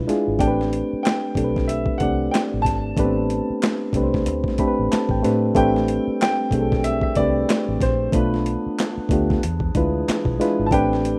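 A smooth, soulful neo-soul R&B groove opens with a bright, reedy electric piano laying down chords up front and a clear baby grand piano carrying the melody, joined almost at once by a gritty, compressed boom bap drum kit with a thumpy kick, medium-tuned snare, hi-hat and handclaps. Underneath, a vintage fingered electric bass sits dark and round, its foam-muted tone giving each note a punchy, amped weight. The 16th notes carry a gentle swing, and the electric piano steps out with a fill from 4.3 to 5.6 seconds before the phrase repeats. At 5.5 seconds a distant woodwind section enters in the background with sustained chords, adding a roomy, classical-style layer with light vibrato. The harmony moves from a lingering minor eleventh chord toward tenser half-diminished and altered dominant colours near the close. The mix is dry and rough, with the feel of a home demo, and the clip is cut from a longer piece.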